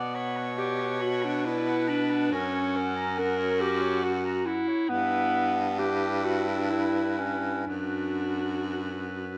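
Classical and lyrical, this melancholic, yearning excerpt for single-reed quartet moves in a rubato 3/4 at roughly 61-71 BPM in B minor, passing through Bm, F#, Em/G and Bm/F# across its 9.4 seconds. A clear, distant clarinet carries the melody high above a lightly vibrato alto saxophone on the second line, while a mellow, vintage-toned clarinet sits up front in the accompaniment and a warm baritone saxophone with vibrato anchors the bass. The ensemble sounds as if placed on a scoring stage with moderate reverb that gives the lead clarinet a roomy presence.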